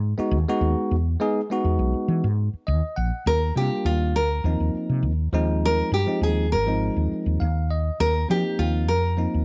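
Jazz at 102 BPM in straight 4/4, this bright, soaring passage is cut from a longer piece and tuned to A4 = 443 Hz. A woody, round fretless electric bass opens at 0.0 s up front, joined at once by a clean, bell-like tine electric piano that adds short fills over rich chords moving from Emaj9 to Ebmaj9 and settling on Eb69. At 3.3 s a fingerpicked nylon-string guitar takes the melody with a deep classical tone, audible finger squeak and plate reverb, all in a lightly reverberant room.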